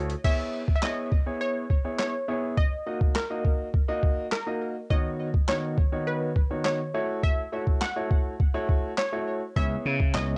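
A straight, confident dance-pop groove drives this short cut from a longer piece, built on a compressed, pitched-down boom bap sampler-style drum kit with a thumpy kick, a medium-tuned snare, hi-hat, handclaps and crash cymbal, all sitting up front in a dry, homemade cassette sound. A natural grand piano carries the chords with sidechain pumping beneath a glassy, crystalline wavetable pluck melody whose evolving filter sweep, noise layer and chorus trail into tape echo. A bright, growly slap bass, overdriven and punchy, sounds only for an instant at the start and returns at 9.6 s as the progression comes back to C#m7.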